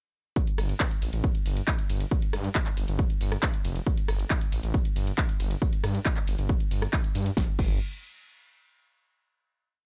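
A heavy, layered electronic kick pounds four-on-the-floor from 0.4 s alongside a punchy, overdriven analog drum machine with programmed hats, ride, rim clicks, claps, tambourine, crash and a snare backbeat, in this driving, hypnotic peak-time techno at 137 BPM. A thick, menacing detuned saw bass enters at 0.6 s with off-beat notes and sidechain pumping, sitting up front beside the kick through the drop until a final note rings from 7.4 s. The sound is dry and gritty, with little reverb.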